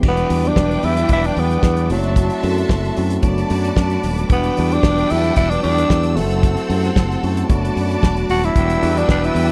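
A damped 1970s drum kit with a fat snare, tight kick and dark cymbals drives this glamorous, danceable disco excerpt at 113 BPM in E minor from the first beat, together with a punchy, bright fingered electric bass up front. A mellow tine electric piano sits in the background as accompaniment, while two bowed string sections add lush colour: a clear, focused one carries a second line and a smooth-topped one holds sustained chords further back. From 0.1 seconds a growling tenor saxophone takes the melody as a jazz-style solo, breathy and raspy with subtone, scooped notes and a soft attack. The harmony cycles through Em9, F#m7b5 and Bm7/F#, returning to Em9 at 8.6 seconds, where a tight, vintage horn section enters with stabs in octave doubling. The sound is dry and close, in the manner of a 1970s studio recording.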